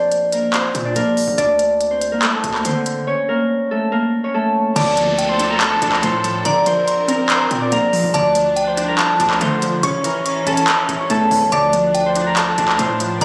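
A fingerpicked, ringing Celtic harp filtered through low-pass and tape echo opens this hard-hitting, eerie trap excerpt in D minor at 142 BPM in half-time over an aggressive, distorted 808-style bass, with an up-front trap kit of crisp hi-hats, handclaps and crash joining at 0.1 seconds, before a tinkling FM synth tine bell, a warbling, lo-fi detuned pluck, a lush bowed string section with vibrato and a faint electronic downlifter all arrive at 4.8 seconds, the whole caught on a phone in the room with light reverb and compression.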